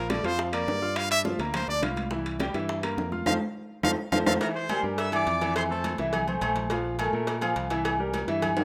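A rough home-demo mix with a touch of small-room ambience carries this sunny, danceable salsa clip in F major at 209 BPM, where a brilliant, close-miked solo trumpet with vibrato leads up front over a clear, intimate concert grand piano with audible action noise and a fingered electric bass. Behind them, tight high-tuned bongos with cowbell, distant woody claves, bright thin-skinned congas and ringing metal-shell timbales with agogo bells drive the groove, with a band accent from about 3.3 seconds and a drum fill from about 3.5 seconds closing the solo. At 4.3 seconds a punchy trumpet section takes over the melody until 6.0 seconds, while the piano, bass, bongos, congas and timbales continue through the C7, Fmaj7 and C7 changes.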